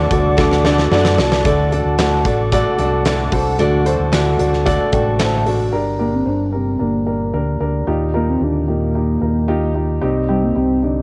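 Piano-driven pop with an earnest, bittersweet mood, cut from a longer piece and carrying the character of a home cassette recording in light reverb. A dark, woody upright piano and a round, amped fingered electric bass run throughout. A fingerpicked dreadnought acoustic guitar riff, a hollow flute group holding sustained chords in the background, and a big-room arena drum kit with a fat snare, punchy kick, hi-hat and handclaps fill the opening until about 5.7 seconds, with a drum fill early on and a piano fill just before that point; a soft octave-layered synth lead with sub-octave depth, chorus, phaser and vibrato sings the melody briefly at the start and returns from 6.0 seconds over Gm, Ebadd9 and Cm chords.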